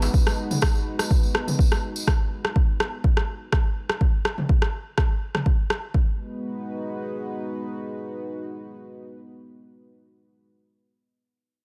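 Spiritual and driving, this short afro house excerpt at 124 BPM in G# minor sets a deep, up-front electronic kick and a tape-warm deep house kit with rim clicks and toms, both re-recorded in a small room, beneath a smooth, mellow sawtooth pad that sustains a G#m7 chord with chorus and sidechain pumping until 10.5 seconds, while a jingly, distant tambourine rings only through the first 2.0 seconds.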